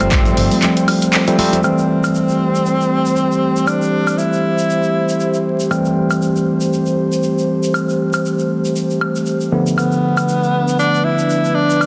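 A deep house groove at 118 BPM in 4/4, swung at 56% on the sixteenths, sets a deep, hypnotic mood in A minor across this short cut from a longer piece. A punchy, tape-warm analog drum machine plays handclaps, hi-hat and woodblock with low-pass filtering on the hats, snare and percussion, while a grainy, close tube shaker runs throughout and bright congas and bongos sit very quietly underneath until 1.6 seconds. A round, dark hollow-body electric bass sounds a single G1 under the opening G9sus4 before dropping out at 0.5 seconds. A barky, lightly overdriven tine electric piano plays stabs up front through a combo amp, and a soft, detuned pad with a noise layer holds sustained chords through chorus, both pumping against the sidechain as the harmony moves from Am7 to Bm7b5. A breathy, whispered tenor saxophone carries an intimate jazz-style melody with vibrato and dub echo, dropping out at 5.5 seconds and returning at 9.8 seconds. 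A moderate plate reverb, a dense, heavily limited modern master and a layer of vinyl crackle round out the sound.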